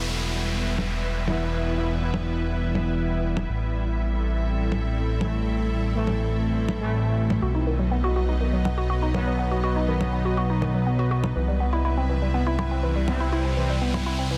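A straight, steady 4/4 pulse drives this hypnotic, melancholic slice of melodic techno, cut from a longer piece, with layered electronic congas sitting in the background, their tape-tinged sound re-recorded in a small room and softened by low-pass filtering. A fat, detuned sawtooth bass sits up front from the first second, thick and sustained with a quick filter pluck, while an evolving wavetable pad holds bright, morphing chords, its slow attack and long release blurred by ensemble chorus and built-in reverb. A downlifter opens the passage and a riser returns at 12.5 seconds to push toward what comes next. Brassy, nasal analog synth stabs enter at 1.3 seconds, bold and detuned with vibrato, chorus and digital delay. At 7.4 seconds a woody, wave-folded pluck joins with mellow arpeggios, its decaying, organic tone colored by cassette tape, chorus and delay as the harmony moves from Em through Am7 and B to Cmaj7, all under a dense, heavily limited modern master with light digital ambience.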